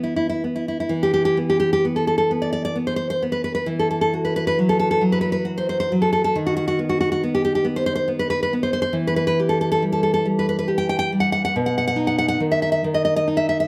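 A romantic piece for solo classical guitar, this short excerpt of a longer work unfolds in E minor with a melancholic, passionate mood. The tempo is slow and elastic, around 38-48 BPM counted in dotted quarters, in a flexible 6/8 with free rubato phrasing. A fingerpicked nylon-string guitar carries the whole passage, its full-bodied, deep classical tone sitting up front and ranging from B2 to G5. The harmony moves from an opening E5 through Esus24 at 3.7 seconds, B/D#, and Em before settling on B near 11.5 seconds. Close, detailed microphones capture the instrument intimately, with a light reverb adding a touch of space around it.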